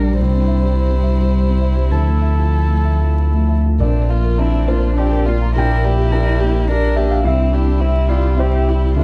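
Vinyl crackle and a light reverb frame this reflective, longing neoclassical piece for piano and strings, moving in a rubato 3/4 at roughly 94-108 BPM. A single sul tasto violin carries the melody with an airy bow and vibrato, a close, woody cello sings a second line beneath it, and a distant viola sits in the background with a felt-muted upright piano of intimate, mellow tone, over a very quiet, moody ambient pad of slow-attack sustained chords and an up-front, punchy sub bass with a pitch-drop attack. At 3.8 s a rustic marimba with soft mallets enters in the background, adding round, dry arpeggios touched by slapback echo.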